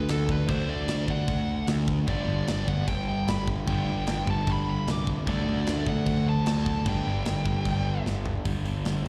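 Upbeat and rowdy, this short punk rock excerpt in G major charges along at 151 BPM in a straight 4/4, with a nasal lead guitar through a parked wah and slapback echo playing the melody over crunchy and sludgy overdriven guitar riffs, a punchy fuzz-laden picked bass up front, a tight metal drum kit with crash, hi-hat, kick, snare and toms, and a dark, double-tracked overdriven guitar that joins at 2.1 seconds, all heard as a live gig through the venue's PA with recital hall reverb before a drum fill at 8.1 seconds.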